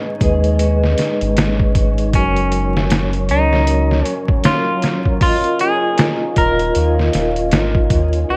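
A slow, swung trip hop groove at 78 BPM in 4/4 arrives at 0.2 s, as a gritty, pitched-down, tape-warm sampler drum kit with a thumpy kick and medium-tuned snare locks beside a round, deep analog bass, both sitting up front. Over a smoky, melancholic progression of G#m, F# and D#sus2, a bright, clean semi-hollow electric guitar carries the melody through dub echo, while a mellow soft-mallet vibraphone rings with tremolo, 12-bit sampler grit and tape echo. A moody, detuned ambient pad with chorus lingers in the background alongside a very quiet, breathy, wind-like noise layer, and the whole short excerpt is coloured by worn cassette wobble, vinyl crackle and warbly pitch drift.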